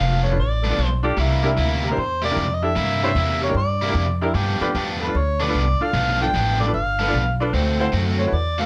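This electric blues shuffle excerpt rolls along at 151 BPM in 4/4, with a laid-back, rollicking swing on the eighth notes in G mixolydian. Up front, an overdriven harmonica carries the melody with a gritty edge, light vibrato, scooped notes, tongue slaps and a slapback echo. An overdriven stack guitar delivers a bright picked riff, while a thumpy, woody upright bass sits prominently underneath. A worn, slightly detuned upright piano adds brilliant accompaniment with audible action noise. A breathy, raspy tenor saxophone with a vintage, growling tone slips in short second-line phrases at 1.0, 4.2 and 7.4 seconds, also carrying slapback echo. Light reverb surrounds the band as the harmony moves from G7 to C7, back to G7 and on to D7.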